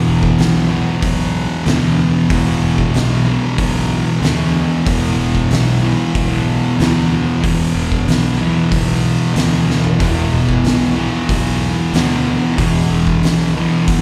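A double-tracked fuzz guitar sits up front, grinding out a distorted, picked riff low in its range on an E5 chord in this heavy, sludgy stoner and doom metal excerpt cut from a longer piece. It moves at 93 BPM in a straight 4/4, with a fingered electric bass underneath that is overdriven and growly, its fuzz tone coming across direct and amped. An oversized, low-tuned acoustic drum kit of hi-hat, kick, snare and toms fills a bright stone room with a pumping, saturated, gritty character, pairing a fat snare with a boomy kick. A short drum fill lands at 9.7 seconds before the groove carries on to the end at 14.0 seconds. The whole performance sounds like a live gig heard through the venue's PA, with light club reverb and studio ambience giving it a loud, thick presence.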